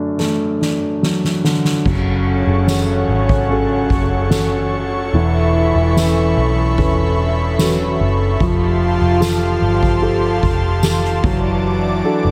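A slow, straight 4/4 pop ballad at 73 BPM, tender and emotional, opens with a grand piano of long sustain and a soft-mallet drum kit playing a fill from 0.2 seconds, its boomy kick, fat snare and dark cymbals sounding in a big room. At 1.9 seconds a round, punchy, foam-muted electric bass arrives up front alongside a French horn section with light vibrato and delay and an airy, breathy pad with chorus, while a jingly, distant tambourine enters at 2.7 seconds. The harmony moves from D/F# through F#m, Aadd9/E and Fadd9 before returning to D/F#, all set in light reverb and a small room ambience in this fragment of a longer piece.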